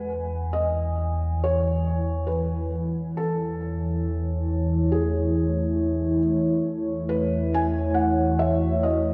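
Worn, warbling cassette-tape sound and a concert-hall reverb wrap this serene ambient fragment, in which a felt-muted upright piano carries a soft, intimate melody through diffuse delay over a detuned, nostalgic tape-like pad with chorus and a round sine sub bass with tube saturation, all three sounding together as the harmony moves from E69 to F#m9/E at 3.2 seconds and A6/E at 6.7 seconds.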